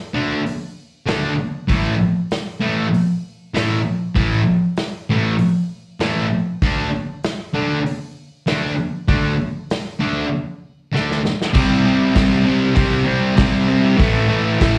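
Garage rock with a rowdy, raw edge at 98 BPM, this excerpt opens on a thick, bright fuzz guitar riff, double-tracked with slapback echo and moving through D5 and A5 power chords. A vintage drum kit joins at 0.5 seconds, with dark cymbals, a tight kick and a rolled-off top, all sitting up front. A drum fill at 10.9 seconds leads into a new section built on C5 and A5, and the whole take has the live-club feel of a gig captured through the venue's PA onto cassette.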